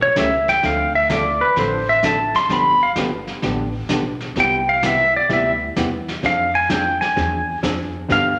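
Down-home and cheerful, this short western swing cut from a longer country piece rolls along in 4/4 with a swung eighth-note feel. A bright, clean pedal steel guitar carries the melody and takes the solo throughout, sitting up front with a compressed, fingerpicked tone, slide phrasing and volume swells in its upper register. Beneath it, a woody pizzicato upright bass with steel strings holds down the low end, while a dark, clean hollow-body jazz guitar, fingered and compressed, comps the chords from 0.2 seconds. A vintage brush drum kit enters at the same moment, with brushes on a medium-tuned snare, a punchy kick and hi-hat, its warm, rolled-off sound placed mid-forward as if in a small room. The harmony moves from A7 through Dm7 and G7 to Cmaj7 before turning to Fm6 at 6.2 seconds, and a large studio reverb lends the recording a wet, roomy glow.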